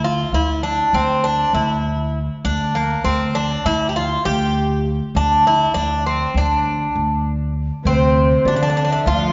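This is a Turkish makam ensemble piece in D makam ussak, cut from a longer work, moving in a brisk 9/8 at 199 BPM counted in eighths with a straight feel and a melancholic, soulful mood. A bright, metallic Greek bouzouki carries the melody up front, its picked double strings, some doubled at the octave, ringing between Bb3 and G4. Beneath it, a woody upright bass plays pizzicato on steel strings from D2 to D3, also close and present. At 7.8 seconds, just before the music moves into a new section, two second lines join: a breathy, reedy ney with vibrato and tongued notes sits in the background between C5 and F5, while a single bowed cello, rich, nasal and earthy with light vibrato, sounds distant in the C3 to F3 range. The ensemble is bathed in the wet reverb of a church or concert hall with a 2.1-second decay, and the top end is rolled off above 7.5 kHz, giving the whole a hall-filled glow.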